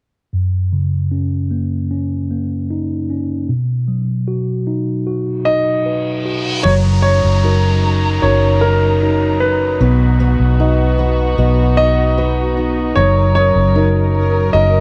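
Wrapped in the worn, warbly pitch drift of old cassette tape with light small-room reverb, this emotional, heartfelt pop excerpt at 76 BPM in F# major opens on a mellow, clean tine electric piano moving between F#6 and B chords; a clear, intimate concert grand piano with audible action noise takes the melody at 5.5 seconds, and after an electronic reverse cymbal and downlifter, a round, foam-muted vintage electric bass up front, soft-attack sul tasto chamber strings with light vibrato, and a full-bodied fingerpicked steel-string acoustic guitar with tape echo and finger squeak in the background all join at about 6.6 seconds.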